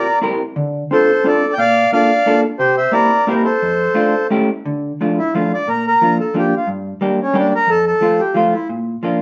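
A reedy, full accordion carries the melody up front in this whirling, bittersweet musette waltz at 177 BPM in a lightly swung 3/4, while a clean, picked vintage hollow-body jazz guitar supplies dark accompaniment, the pair heard live in one room with wet studio reverb as the harmony settles into D minor at 4.6 seconds in this fragment cut from a longer piece.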